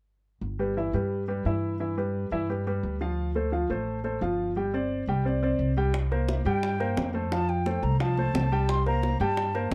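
Afro-Cuban jazz, danceable and sophisticated, opens with a woody, up-front upright bass and an intimate concert grand piano with audible action noise, moving through chords such as Dm7 and Gsus4. Round, low-tuned bongos played with hard hands enter at 5.9 seconds, and an airy, distant silver flute takes the melody with vibrato from 6.3 seconds. The production is dark, with light reverb and a faint mains hum.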